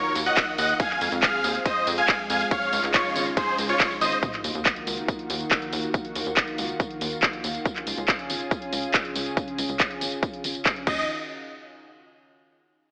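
This bittersweet, emotional uplifting trance excerpt in Eb dorian at 140 BPM opens mid-drop with huge, bright detuned supersaw chords carrying the melody over a mellow, catchy plucky unison lead in the background and a thick, warbling vintage pad, all pumping to the sidechain, while the tape-echoed supersaws and the lead fall away at 4.1 seconds. The tight, driving sequencer bass, the up-front analog drum machine with claps, hi-hat, ride, tambourine and crash, and a punchy, overdriven layered kick push straight through. At 4.2 seconds an impact lands with a very quiet sub drop, and a filter sweep opens on the bass as the chorused pad sustains onward, the whole mix colored by light digital ambience and an AM radio tone.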